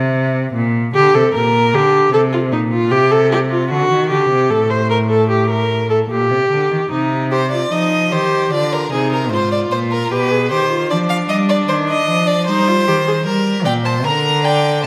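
A rich, up-front cello opens this serious, driving excerpt of a baroque-style string quartet fugue in C minor at 76 BPM in 4/4, its bowed bass line expressive with soft attacks, portamento and vibrato, and a warm viola soon joins with a smooth-topped, even accompaniment. At 7.3 seconds a focused, distant violin adds a second line with vibrato, and at 13.7 seconds another violin enters up front with a high, smooth melody. The harmony moves from Gm/Bb through Am7 and D7 to Cm, Dm7b5 and G7/B, all carried in the wet reverb of a recital hall.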